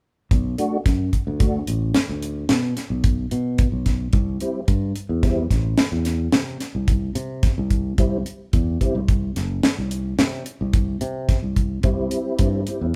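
A deep reggae drum kit propels this tense, driving progressive instrumental, its dry, acoustic sound placing a high-tuned snare, tight kick and hi-hat up front. Cut from a longer piece, it moves in an uneven 7/4 with a straight feel, and the band sounds as if it is playing live together in one room under light reverb. A fingered electric bass carries the low end, bright, growly and direct from the amp, sitting close alongside the drums. A tonewheel organ enters at 0.6 seconds as accompaniment, its tone mellow, round and dark yet clean, colored by chorus vibrato and a slow rotary speaker. The harmony shifts from Bm to C at 4.1 seconds, and the three parts play together through to about 13.0 seconds.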